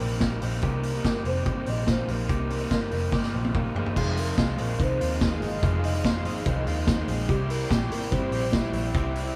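This wistful, bittersweet indie pop excerpt in F minor at 144 BPM opens with a warm, up-front vintage drum kit, a round foam-muted picked bass, crunchy overdriven guitar and a bright, twangy clean electric guitar playing spring-reverbed arpeggios, while a soft octave-layered synth lead carries the melody with chorus, phaser and vibrato. A drum fill at 3.1 seconds leads into a new section at 4.0 seconds, where a vintage sawtooth string machine on violas enters with slow-attack sustained chords in the background. The harmony rests on Fm7 before moving to C at 7.3 seconds, all captured as a band playing live in one room with moderate studio reverb.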